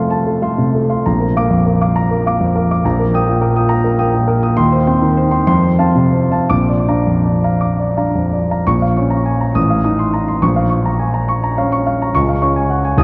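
A six-eight metre moves with free, breathing rubato through this romantic character piece for solo grand piano, a brief fragment drawn from a longer work. The mood is passionate yet hopeful, and the single piano carries everything, ranging from deep bass notes up into high upper registers. Its tone is warm and natural, with a short sustain, and it sits up front in the mix. A long, wet church reverb surrounds it, giving the dark production a spacious, resonant halo. The opening phrase rests on major harmonies before the music turns to minor at 8.7 seconds, adding shadow until the fragment breaks off at 13.0 seconds.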